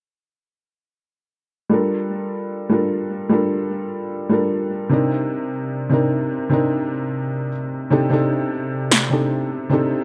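Future bass in a half-time feel, this bittersweet, lush fragment of a longer piece centres on an intimate, felt-muted upright piano with audible action noise and a boxy tone, treated with a filter sweep and digital delay as it moves through Gm7, Cm7 and Cm69 from 1.7 s, while a punchy, layered electronic snare hits up front at 8.9 s, all within a moderate studio room reverb.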